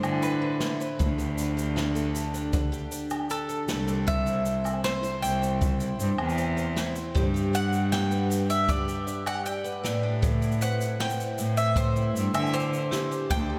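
A rich, earthy cello carries the bass up front, its bowed single line nasal and touched with light vibrato, anchoring this pastoral, hopeful folktronica excerpt at 78 BPM in a straight 4/4. Above it, a bright bowl-back mandolin picks the melody on its double strings, while a woody, boxy twelve-string acoustic guitar with old strings plays shimmering, octave-doubled arpeggios roughened by a vintage 12-bit sampler grit. Both plucked parts trail off into a diffuse ambient delay. A distant, roomy kit of brushed woodblock, shaker and medium-tuned snare with a rolled-off top keeps time from the start, joined at 1.0 seconds by a boomy brushed kick. At 7.2 seconds a metallic, ringing vibraphone struck with hard mallets adds a second line in the background, its slow motor vibrato also feeding the ambient delay, as the chords move from Amadd9 through Dsus4, C and G back to Amadd9, all set in a dreamy mix soaked in moderate cathedral reverb.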